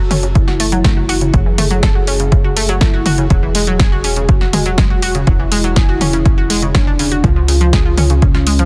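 Cinematic and melancholic, this melodic techno fragment moves over F#m, E and C# chords with a straight feel, led by a soft, octave-layered synth lead whose round, dark tone carries chorus, tremolo, vibrato and tape echo. Beneath it, a bright analog pluck spins arpeggios through chorus and dub echo, while a tight, sawtooth sequencer bass drives the low end, all three pumping against the sidechain. A punchy, tape-warm drum machine plays hi-hats, snare and toms from 0.1 seconds, joined at 0.4 seconds by an up-front electronic kick, all in a dry, dense and heavily limited modern mix.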